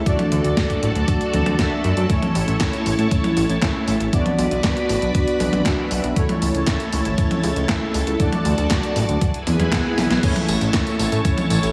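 Playful and danceable, this italo disco passage in A major moves at 118 BPM in a straight 4/4, cut from a longer piece. A fat, detuned sawtooth bass with a plucky filter sits up front, its saturated tone carrying the low end, while an overdriven, thumpy electronic kick enters at 0.1 seconds. Bold, nasal synth brass stabs with vibrato, chorus and digital delay ride over a lush string machine, whose slow-attack chords are coloured by phaser and ensemble chorus. A clean 12-bit drum machine, with an up-front medium-tuned snare, handclaps, hi-hat, tambourine, crash and toms treated with overdrive and gated reverb, plays a fill at 10.0 seconds, and a band accent at 10.1 seconds leads into a brief closing section at 10.2 seconds. The chords run D, A, B minor, A, D and E before arriving on A, with light vinyl crackle and a small room reverb surrounding the parts.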